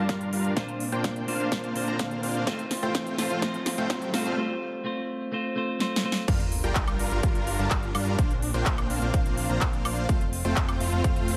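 A twangy clean electric guitar with gritty sampler crunch and tape echo, a huge detuned supersaw riff softened by cassette haze and a low-pass filter, lush bowed strings and a fat analog bass set back in the mix all pump to the sidechain in this emotional, euphoric festival progressive house build-up, as punchy overdriven electronic kick and big-room drums with crisp hats, claps, snare, woodblock and crash roll through fills and a very quiet riser and sub drop swells beneath, until the guitar falls away at 6.3 s for the drop and its impact.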